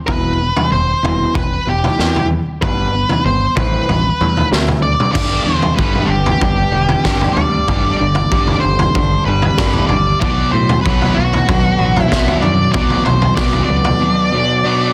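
This dark, angsty slice of quiet-loud alternative rock arrives through a dense, heavily limited modern master with light reverb, cut from a longer piece at 95 BPM in a straight 4/4. A lo-fi, slightly broken-up guitar through a small old amp plays fingered arpeggios in the background with plate reverb from the start. A dark octave-fuzz lead carries the melody up front, also bathed in plate reverb. Beneath it, a growling picked bass with overdrive sits bright and direct, while a raw garage drum kit in a small room hits with a punchy kick, high-tuned snare, toms and crash, gritty and saturated with a rolled-off top. At 5.1 seconds the harmony moves from Em, G, Amadd9 and D onto G, and a bright overdriven guitar riff enters in the background. At 10.2 seconds the chord shifts to Bm and a very quiet fuzz guitar adds a second picked riff.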